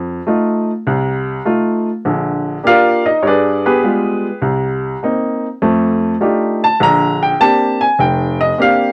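Jazz in Bb major at 101 BPM with a swung 4/4 feel, this playful, warm passage cut from a longer piece features a solo upright piano, woody and up front with a short sustain in light reverb, ranging from F1 to Bb5 as it moves through F7, Bb6, G7b9, Cm7 and F13 before settling on Bb69 at 6.8 seconds.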